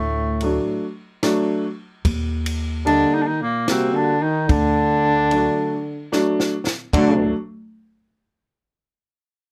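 In a straight three-beat lilt, this festive, soulful klezmer excerpt opens with a mellow, distant clarinet in a classical style carrying the melody over a trombone second line, its tone warm with light vibrato and scooped notes, while a woody pizzicato upright bass with steel strings holds the low end. At 0.4 s an upright piano with long sustain and a compact cocktail drum kit join in, the kit dry and natural with dark cymbals, a high-tuned snare and a punchy kick, as the harmony moves from D to Eb and back. A drum fill at 6.1 s leads into a new section, all captured close and detailed with light reverb.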